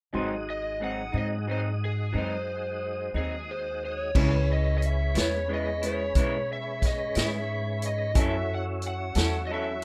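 Slow blues in 12/8 at 60 BPM in C# minor, soulful and mournful, cut from a longer piece and captured as a rough home demo with studio reverb. A dark, mellow upright piano sits in the background beside a twangy, slightly broken-up electric guitar with harmonic tremolo, a smooth tonewheel organ holding chords through a slow rotary speaker and chorus vibrato, and a woody pizzicato upright bass up front, while an overdriven, picked lead guitar carries the melody from 0.5 seconds. A vintage drum kit with a punchy kick and dark cymbals enters at 4.2 seconds as the harmony moves from G#7 to C#m7, later reaching F#m7 at 8.2 seconds.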